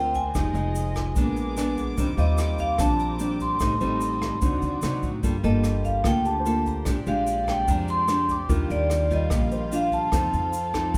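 A breezy, sophisticated bossa nova passage opens with the band playing together in one lightly reverberant room. A vibraphone, struck with medium hard mallets and its motor off, carries the melody in a ringing, metallic, airy voice. Beneath it, a bright, fingerpicked nylon-string guitar sits up front, and a woody, thumpy pizzicato upright bass plays the low line. A very quiet concert grand piano adds natural, deep-toned accompaniment until it drops out at 10.1 seconds, while an intimate chamber violin section holds smooth sustained chords, bowed sul tasto with light vibrato and a soft attack. Brushed drums, with hi-hat, rim clicks and a boomy kick, join at 0.1 seconds alongside a grainy tube shaker in the background. The harmony moves through rich extended chords such as Fm9, Ebmaj13 and Gm9 before settling on F7.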